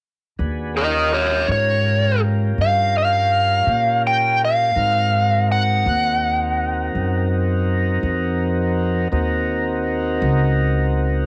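Heard through a homemade cassette recording in a small room with moderate reverb, this swaggering, rollicking blues fragment moves at 55 BPM in 12/8 with a straight feel, shifting from Eb7 to Ab7. A tonewheel organ with key click and a slow rotary speaker holds smooth sustained chords, while an up-front, woody pizzicato upright bass plays the low line beneath it throughout. A dark, overdriven electric lead guitar, picked and up front with its own cassette coloring, carries the melody from 0.8 to 7.6 seconds.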